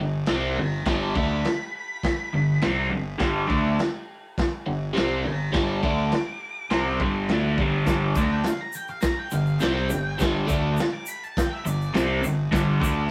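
A straight 4/4 pulse at 103 BPM drives this raw, swaggering garage rock in G major, cut from a longer piece, where a bright, double-tracked overdriven guitar with phaser carries the riff up front over a round, punchy fuzz bass, a dark, saturated breakbeat kit with a tight kick enters at 0.3 seconds, an octave-fuzz lead guitar with analog delay solos high above from 0.6 seconds, and a grainy egg shaker joins at 7.9 seconds, the whole captured as a rough rehearsal-room recording with moderate studio reverb.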